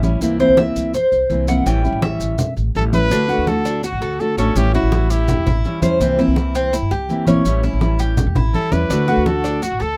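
Danceable and warm, this Cuban son and guajira passage at 166 BPM in D major opens with a metallic, double-strung tres soloing over a dark, fingerpicked dreadnought acoustic guitar, woody pizzicato upright bass, ringing low-tuned congas struck with hard hands and grainy maracas in a straight 4/4, before a close-miked trumpet with vibrato and scooped notes takes up the melody at 2.8 s in a moderate booth ambience.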